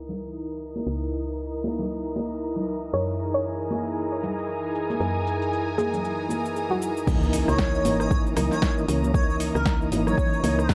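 A swung deep house groove of overdriven kit drums, with a punchy snare, and bright, high-tuned congas carries a late-night mood, as an airy, breathy pad under a filter sweep, a woody FM bass and a lush bowed string section pump together around a soft, round pluck melody with tape echo from 2.9 seconds, until the drop at 7.1 seconds brings in an up-front deep kick, smooth tonewheel organ stabs through a slow rotary speaker, a very quiet electronic impact and a dreamy, detuned lead at 7.5 seconds.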